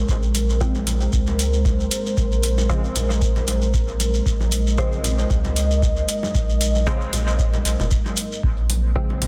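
A 115 BPM dub techno groove in 4/4 with a 56% swing on the sixteenths, this meditative, cavernous excerpt in Bb minor rests on a single Bbm9 chord. A deep, tape-warm analog kick drives it from 0.1 seconds, joined at 0.3 seconds by metallic electronic hi-hats and layered congas that sit in the background, carrying dub echo and a small-room character. A grainy, mellow shekere adds an acoustic, saturated texture until 8.4 seconds. Beneath it all, a clean sine sub bass with tube saturation and sidechain pumping holds the low end, while a moody, detuned sawtooth pad with a sub octave and slow attack sustains chords through chorus and its own pumping. From 0.6 seconds a muted, filter-plucked dub chord stab with short decay drifts through chorus, phaser and dub echo. Light reverb surrounds a dense, heavily limited modern master.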